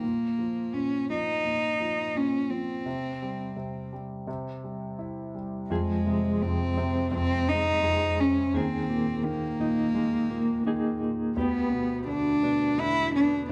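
Melancholic and intimate, this 85 BPM acoustic folk-pop ballad in F minor, cut from a longer piece, sets a close, softly bowed cello melody with a nasal, airy tone and light vibrato over a concert grand piano whose deep bass and audible action noise sit up front, joined at 5.7 seconds by dark, clean electric guitar arpeggios with tremolo, all played live in one room with a moderate large studio reverb.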